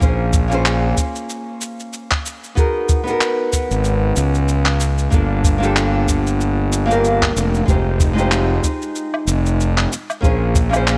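Relaxed and smooth, this short sunset chillout excerpt at 94 BPM in a swung 4/4 sets an up-front, fingerpicked nylon-string guitar, roughened by vintage 12-bit sampler grit and digital delay, over a dark, round fuzz bass with overdrive and tube saturation, a deep analog-style electronic kick that drops out at 10.7 s, and gritty, tape-toned electronic cabasa, handclaps and woodblock, all moving through minor-ninth chords from Bbm9 down to Fm9 and back in a light reverb.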